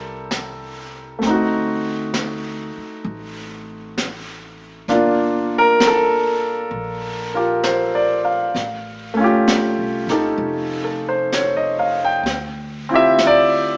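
Tender and late-night, this slow jazz ballad at 65 BPM swings gently in 4/4, with a clear, up-front concert grand piano voicing chords from a rootless Fsus2 through D7b9, Gm7 and A7alt to a closing Dm11. A woody, thumpy pizzicato upright bass sits low beneath it, and a brushed kit with a high-tuned snare and hi-hat enters at 0.3 s. The trio sounds like a live band in one stone room with moderate reverb, heard through a small speaker, in a passage cut from a longer piece.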